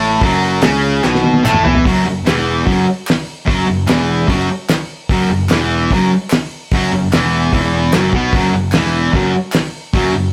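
A fuzzy, double-tracked electric guitar riff sits up front in this swaggering, rowdy garage rock cut from a longer piece, driving along at 148 BPM over a growly fretless electric bass, a dark, cloth-damped thuddy drum kit with a fat snare that plays a fill from 1.0 to 1.8 seconds before the chords move from F#5 to Esus2, and crisp group handclaps tucked in the background, all captured with a rough rehearsal-room sound.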